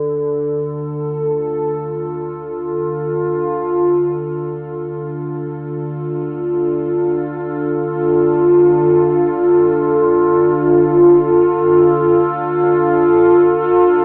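Heard through a huge, cavernous reverb and the worn, warbling pitch drift of old cassette tape with a thin AM-radio cast, this dark ambient drone fragment hangs in free time on a single D minor chord, tuned to A4 = 443 Hz. Up front, a sweeping, resonant pad of detuned, wave-folded sawtooth and triangle tones holds sustained chords through chorus and phaser, its filter swell giving it an evolving shape. Beneath it a deep, ominous drone rumbles in its own reverb, while a pure quartz singing bowl rings on A4 with slow beating, leaving a desolate, unsettling mood.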